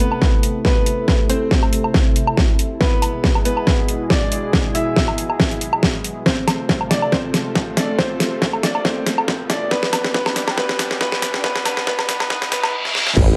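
Menacing and heavy, this half-time wobble dubstep build-up sets a clear, vintage-toned grand piano melody over a lush, detuned supersaw pad with phaser and sidechain pumping, as overdriven drums with a deep snare and bright hats and a distorted electronic kick drive a long fill and filter sweep, very quiet risers and a reverse cymbal climb from 5.2 seconds, and an impact at 13.2 seconds unleashes a compressed, up-front formant-sweep wobble bass in a dark, warm production.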